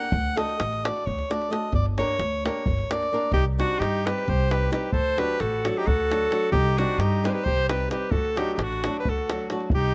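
Set in 7/8 at 262 BPM counted in eighths with a straight feel, this Balkan wedding-band excerpt moves with a restless, bittersweet energy, cut from a longer piece. A bright, close-miked alto saxophone sits up front and carries the melody in a classical style, taking a solo over the opening 3.3 seconds while the music rests in G Hungarian minor. Underneath, a fingerpicked flamenco guitar adds acoustic accompaniment with audible finger squeak, an upright bass plays woody, thumpy pizzicato lines on steel strings, and a davul keeps the pulse tight, close and dry. At 3.3 seconds the key shifts to C Hungarian minor and a reedy accordion enters as a mid-forward second line. The harmony turns between D, G minor and C minor, and a light reverb gives the group a modest sense of space.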